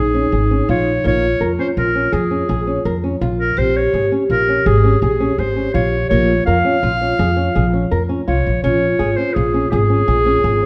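Set in a straight 7/4 at 166 BPM, this hypnotic, pensive piece of contemporary chamber music in Bb dorian drifts between Db and Bb minor harmonies in a moderate recital-hall reverb, and it is cut from a longer work. A soft-attack, classical-style clarinet carries the melody up front while the pizzicato upright bass growls, woody and dark, beneath it. A vibraphone with medium mallets rings a metallic second line with fast motor vibrato, and a thumb-plucked flamenco guitar plays dark arpeggios, finger squeaks audible, throughout the 10.7 seconds.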